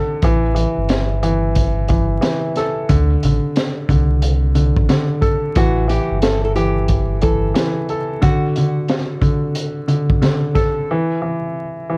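A dark, mellow grand piano with a cassette-tape tint opens this reflective, moody boom-bap hip-hop excerpt at 90 BPM. It is joined almost at once by a deep, full sine sub bass with an octave and a crunchy, gritty breakbeat kit with a punchy kick and high-tuned snare, swung on the sixteenths. At 5.6 seconds a small, fingerpicked nylon-string guitar carries the melody through a digital delay, and the bass drops out at 7.5 seconds, all of it dry and coloured by worn, warbling old tape, vinyl crackle and drifting pitch.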